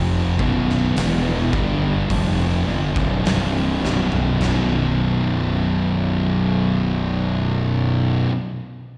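Two fuzz guitars, one compressed and up front and one dark in the background, open this heavy, brooding stoner and doom metal excerpt with a slapback-echoed riff over a growly, overdriven fingered bass, while an oversized, gritty low-tuned kit of punchy kick, fat snare, dark china cymbal, hi-hat and toms joins at 0.4 seconds, slows with the band through a drum fill and drops out at 4.7 seconds as the harmony moves from B minor to B5, all heard as a live gig through the venue's PA with recital hall reverb.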